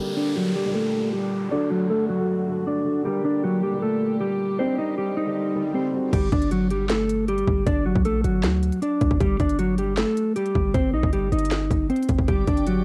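A half-time trap feel in 4/4 takes hold at 6.1 s, when an electronic drum kit arrives with a hard-clipped kick, sharp snare, crisp hi-hats, handclaps and crash cymbal, overdriven and tape-worn at the front of the mix. This dark, eerie hip hop piece, cut from a longer track, is led throughout by a clean, fingered electric guitar melody, mellowed by a low-pass filter and the hiss-soft colour of cassette tape. In the opening section, a boxy concert grand piano with deep bass and long sustain accompanies soft, pure sul tasto strings that float behind it, both muffled by a low-pass filter, while an electronic downlifter sinks beneath a filter sweep that ends at 6.1 s and a swell builds over the final second before it. From there a boomy, sine-toned 808 bass with a fast attack and decaying notes anchors the beat, and the strings return briefly at 12.3 s. Light reverb and digital ambience give the home cassette recording a hazy, intimate space over its brooding minor-key chords.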